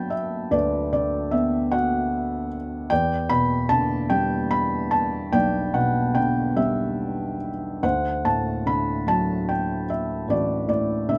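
A felt-muted upright piano plays alone from the first moment, its thick felt giving a soft, dark, intimate tone with audible action noise, placed up front in a light reverb. This peaceful classical fragment, cut from a longer piece, drifts in a rubato 6/8 at about 49 dotted-quarter beats per minute, moving from Gmaj7 to Em7 at 2.9 seconds and D7 at 7.8 seconds. The lyrical playing spans a range from A1 to B5, tuned slightly low to A4 = 438 Hz.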